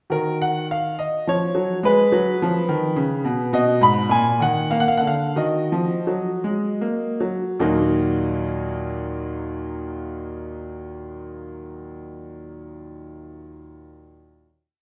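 In a 3/4 metre with free rubato, this brief baroque-style suite movement drifts between 75 and 107 BPM and broadens into a slowing from 2.7 to 7.6 seconds. It is a complete piece for solo grand piano, in Eb minor and tuned to A4 = 438 Hz, with a flowing yet grave mood. The piano sounds brilliant and smooth with a vintage character and long sustain, sitting up front as a single-line melody moves above an independent bass line in counterpoint, spanning Eb2 to B5. The harmony travels from Ebm through Abm and B, then settles via Ebm/Bb and Bb back to Ebm, ending the opening section at 7.6 seconds and giving way to a final chord that rings until 12.2 seconds. A wet recital hall reverb with a 1.6-second decay surrounds the instrument, lending the resonance of a church or concert hall.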